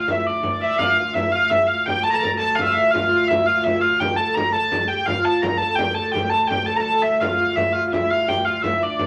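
A straight 6/8 pulse at 112 BPM, felt in dotted quarters, drives this mysterious medieval dance in D minor, a brief portion cut from a longer piece. Up front, a dark, nasal hurdy-gurdy carries the melody between D5 and Bb5, its wheel-bowed, keyed voice reedy with a smooth top. Beneath it, a bright, woody oud plucked with a plectrum plays a second line from D4 to Bb4, its fretless double strings giving a deep acoustic body. In the background, a viola da gamba holds a rich, ringing drone on D2, with light vibrato and a gut-string, period-style tone. A small frame drum joins at 0.1 s with hard hands, its sound compressed and saturated. Wet studio reverb and a layer of vinyl crackle frame the ensemble.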